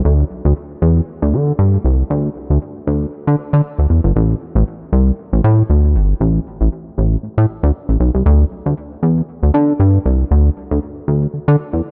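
Danceable and late-night in mood, this short funk excerpt is cut from a longer piece and moves at 117 BPM in 4/4 with a 16th-note swing of 56%, tuned to A4 = 439 Hz. A chorused synth bass plays alone throughout, from 0.0 to 11.8 seconds, ranging from G1 up to D3. Its retro, glossy tone blends pulse-wave and sawtooth sources with pulse-width modulation and ring modulation, shaped by a filter pluck, a fast attack and sustained notes. Chorus gives the mellow bass a shimmer, and it sits up front in the mix. The piece shifts to a new section at 4.2 seconds, and the whole is framed by light reverb in a rough home-demo mix.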